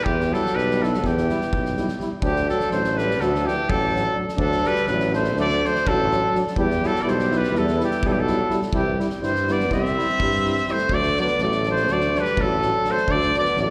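A clear, up-front trumpet with light vibrato carries a fiery, bittersweet Balkan brass melody in 9/8 at 249 BPM from the start, over a distant tuba with light vibrato holding the bass and a warm alto saxophone in the background, with slapback echo on the trumpet and saxophone. A loose acoustic drum kit with a fat snare and tight kick joins at 0.1 seconds, and a roomy trombone and punchy euphonium add background accompaniment from 0.3 seconds, as Em, D and C chords turn beneath in this live-gig excerpt heard through a venue's PA.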